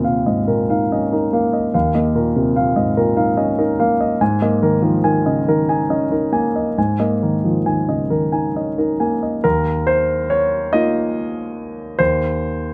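Neoclassical minimalist piano in a lilting 6/8, played with rubato so the pulse breathes freely throughout this short excerpt cut from a longer piece. A solo concert grand carries everything from 0.0 to 12.7 seconds, ranging from Eb2 up to Ab5, its tone warm, deep in the bass, polished and sitting up front in the mix. The mood is wistful and intimate, with open suspended harmonies moving from Ebsus2 to Absus2 at 4.2 seconds before returning to Ebsus2 as a new section begins at 9.4 seconds. The notes have a short sustain, and the piano has a present, close-up quality, while light reverb adds a gentle sense of space around the instrument.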